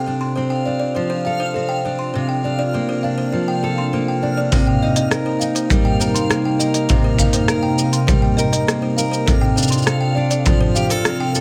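A steady 4/4 pulse at 101 BPM, straight in feel, sets this autumnal, intimate folktronica excerpt in C dorian. A fingerpicked steel-string acoustic guitar, full-bodied and up front with a digital delay, carries flowing arpeggios throughout, while a woody, buzzing kalimba with a hollow-box ring adds a second line above it through delay. Beneath them sits a warbly, lo-fi pad with a vintage, nostalgic tone, holding mellow sustained chords in the background with chorus and reverb, and a reversed, detuned granular texture hovers high on F5, dreamy and bright. The opening seconds carry a filter sweep on the pad over Dm7/C and Bbmaj7/C, and at 4.5 seconds a boomy, saturated kick drum with a gritty, rolled-off top arrives alongside an organic electronic kit of smooth hi-hats, rim clicks and shaker as the harmony settles on Cm7. The chords return to Dm7/C at 9.3 seconds, and the kick stops at 10.6 seconds, all within a gently reverberant space.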